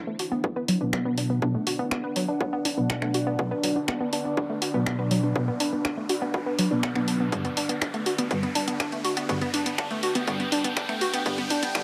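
Melodic techno at 122 BPM in B minor, this melancholic, cinematic build-up moves from Bm to G and then C as a bright, round analog pluck arpeggio and fat, detuned synth brass stabs, both chorused, tape-echoed and sidechain-pumped under filter sweeps, float over a deep, mellow ambient pad with a slow attack and long release. A punchy, tape-tinged drum machine sits up front with finger snaps and pumping hi-hats, joined at 0.4 seconds by a heavy, overdriven, high-passed electronic kick, while an electronic riser climbs in from 1.6 seconds. The echo-heavy mix is bathed in moderate spring reverb and digital ambience.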